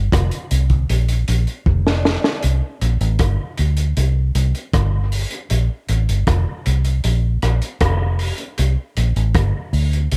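A lightly reverberant, up-front mix carries this laid-back, hazy dub reggae fragment at 78 BPM, where a vintage muted fingered electric bass with a round, foam-muted, amped tone holds the low end from F1 to D2 beneath a gritty, saturated breakbeat kit of hi-hat, punchy kick, rim click and high-tuned snare with a rolled-off top, whose fill from 1.7 to 2.4 seconds leads into the second section.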